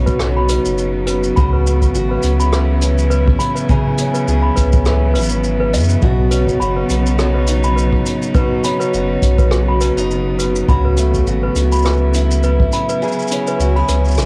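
Swung sixteenths at 103 BPM in 4/4 give this playful folktronica excerpt its easy lilt, as a punchy kick and a vintage brush kit of hi-hat, rim click and shaker, both carrying cassette-tape colour, play alongside a round sine sub bass, while a bright picked archtop guitar with finger squeak plays arpeggios through analog delay and plate reverb, a clanky, slightly out-of-tune toy piano adds a second line, and a clear string quartet with airy bow and 12-bit sampler grit holds sustained chords cycling Badd9, A6 and C#m in B mixolydian; the kick drops out at 13.0 s, all captured as a home recording on cassette.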